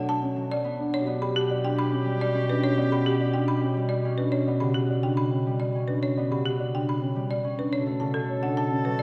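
A cavernous cathedral reverb surrounds this short cut from a longer piece of minimalist classical pattern music, in 3/4 with a straight, urgent and hypnotic feel. The folk marimba carries the melody with hard mallets on hardwood bars, its tone woody, rustic and percussive. Beneath it the concert harp rings out a fingerpicked accompaniment, and a dark, boxy grand piano plays arpeggios through the middle register. The bass clarinet, the loudest part, holds a soft-attacked, mellow B2 in a classical style. A clear soprano saxophone with vibrato adds a quiet second line from 0.9 to 4.2 seconds and returns at 7.7 seconds, as the harmony moves from Bm7 to G/B and back to Bm7.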